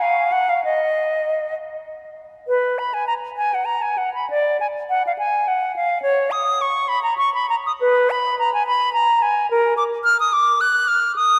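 Bathed in a wet church reverb with a 3.5-second decay, this 11.4-second passage from a longer baroque-style classical fantasia for unaccompanied flute moves in a flowing, grave 6/8 with rubato at 62-74 BPM in dotted quarters, in Eb minor and tuned to A4 = 439 Hz, as a solo silver concert flute sits up front with a pure, bright metal tone, tongued notes and vibrato across a range from Bb4 to Gb6.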